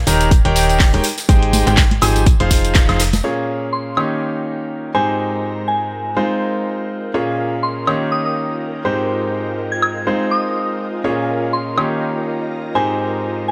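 Set in light reverb and studio ambience, this joyful, feel-good piano house excerpt at 123 BPM in Ab major opens with a bright, brilliant grand piano riff, pumping and trailed by digital delay, over a round, dark FM bass, a punchy, layered electronic kick, a very quiet cocktail kit with a high-tuned snare, close, dry tambourine and congas, and a small-room analog drum machine of handclaps, hi-hat and woodblock; the bass, kit and hand percussion stop at 3.2 seconds as an ethereal, warbling pad swells in slowly in the background and a soft, mellow synth bell melody with chorus and delay joins the piano, and the drum machine returns from 7.9 to 11.9 seconds over cycling Abmaj7, Fm7, Bbm7 and Eb7 chords.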